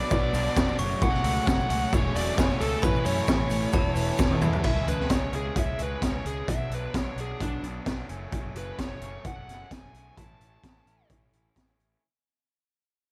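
A carefree, wistful indie rock excerpt at 131 BPM opens with a bright overdriven garage guitar riff, a dark distorted lead guitar melody and a thick fuzz guitar riff. These sit beside a gritty, up-front acoustic drum kit with a high-tuned snare and punchy kick, while a fuzzed electric bass, a sparkling brass-mallet glockenspiel line, a very quiet flute-like tonewheel organ through a slow rotary speaker and a grainy egg shaker sit further back. The glockenspiel drops out at 4.4 s during a drum fill, and once the fill ends the organ, fuzz guitar and shaker drop out at 4.6 s. The lead guitar then takes a bluesy solo over C#m, Bm, F#madd9 and A as the track fades out, all in a light small-room reverb that keeps the sound close and raw.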